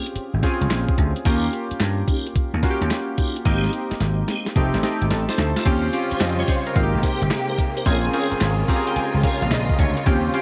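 A dry, up-front mix carries this punchy, slick new jack swing excerpt in Bb dorian at 109 BPM with a swung 16th feel, where crisp 8-bit drum machine hits with a thumpy kick, handclaps and crash, a vintage slap bass punches out low, bright square-and-saw analog keys with chorus chord through Bbm7, Eb7 and Abmaj7, a piping tonewheel organ stabs through a fast rotary speaker, a drum fill runs from 3.5 to 5.7 seconds, and distant, lush bowed strings enter at 5.7 seconds before a keys fill closes the clip.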